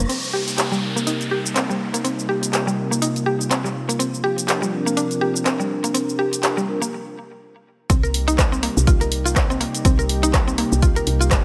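Spiritual and driving, this afro house passage in C minor at 123 BPM swings its sixteenths over a layered deep house kit of crash, handclaps, dark hats, rim click and shaker, while a smooth, detuned analog pad holds Cm7 and Bbadd9 chords and a bright, percussive mallet-like pluck spins delayed arpeggios, both under filter sweeps, as a dark synth brass adds tape-tinged stabs and a downlifter passes through the opening seconds; after a break at 6.9 s, the drop at 7.9 s brings in a punchy electronic kick and a round, woody FM bass, with sidechain pumping on the pad, pluck, brass and bass and light reverb around the mix.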